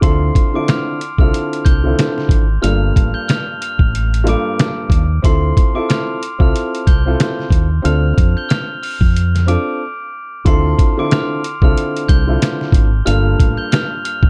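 A gritty, tough boom-bap hip-hop groove in D minor opens at 92 BPM with a swung feel. Compressed, pitched-down, muffled sampler-style drums with a thumpy kick and medium-tuned snare sit up front, a round, punchy fingered electric bass sits beneath them, and a dark, mellow baby grand piano with audible action noise, cassette-tape coloring and plate reverb moves through Dm7 and Gm7. High above, a close-miked glockenspiel played with soft plastic mallets rings out a bell-like melody with slapback echo, and after a short break at 9.8 seconds the piece shifts into a new section at 10.5 seconds before this cut from a longer piece ends.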